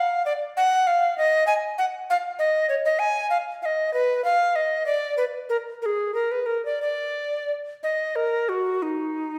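A solo tenor recorder carries this baroque-style classical fantasia in Eb minor, its woody, airy tone shaded with vibrato and a crisp chiff on each attack, ranging from Eb4 to Ab5 and sitting up front. The mood is radiant and dance-like, moving in a rubato 12/8 at roughly 59-66 BPM by the dotted quarter. A wet recital hall reverb with a 1.5-second decay surrounds it, heard from further back in the room, and the 9.4-second passage is cut from a longer piece.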